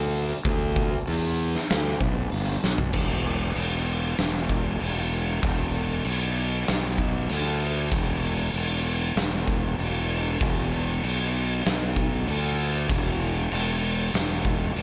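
A growly, fuzz-drenched fingered electric bass opens this sludgy, heavy stoner and doom metal passage, sitting low and punchy up front with thick overdrive. An oversized, low-tuned acoustic drum kit joins at 0.4 seconds, its boomy kick, medium-tuned snare, toms, hi-hat and dark crash cymbal sounding gritty and saturated in a big, pumping room, with a drum fill at 2.6 seconds leading into the second section. The overall mix is dry, and this is cut from a longer piece.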